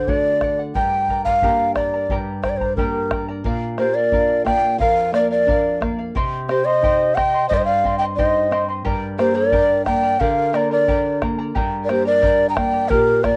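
Festive and earthy, this Andean folk excerpt in G minor moves at 89 BPM in a straight 2/4, with a breathy, bright bass bansuri carrying the melody up front, close-miked, crisp-edged and a little unsteady. Underneath, a shimmering, fingerpicked charango with double strings and a small nylon-string guitar with audible finger squeak fill out the accompaniment, both carrying a cassette-tape colour, while a deep, dark bombo sounds close and dry. At 3.8 s a mellow, hollow pan flute with the same tape tint joins on a second line, airy and soft in attack, as the harmony moves from Gm through Bb and Cm, all set in a light reverb with a homemade cassette feel.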